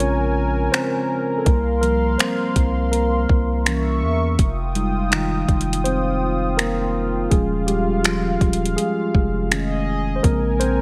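Contemporary R&B at 82 BPM in F minor with a late-night, longing mood, where a mellow, clean tine electric piano takes the solo up front over a detuned sawtooth analog pad with chorus and sidechain pumping, a deep, sine-toned 808-style bass holding long decaying notes, and a smooth electronic drum kit of finger snaps, metallic hi-hat and soft kick, set in a light digital ambience.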